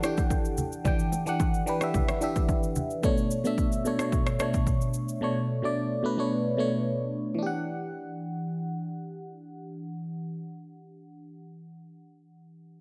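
A punchy, overdriven deep house kick with rim click and shaker drives this late-night, deep amapiano excerpt at 110 BPM in E minor, while soft-handed bongos and congas sit close in the background until 2.9 seconds and the kit drops out at 5.2 seconds. Up front, a biting, vintage FM electric piano with a warbling phaser and fast, decaying attacks carries the Em9 and Bm9 chords from the start through to 12.8 seconds, playing alone once the kit exits, all set in light reverb.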